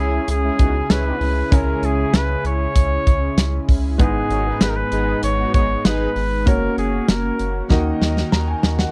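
A straight 4/4 groove from an up-front acoustic drum kit, with a punchy kick, a medium-tuned snare, hi-hat and tambourine, kicks in at 0.3 s beneath a round, deep analog bass in this urgent, nostalgic 1980s-style pop excerpt. A clear, vintage flugelhorn with slapback echo and scooped notes carries the melody over an open grand piano, a lush, thick chorused unison pad and bold, brassy analog synth stabs that drop out at 6.1 s. The flugelhorn stops at 7.7 s as a drum fill begins beneath the continuing piano, pad and bass, all captured in a dry, close 1970s-style studio sound.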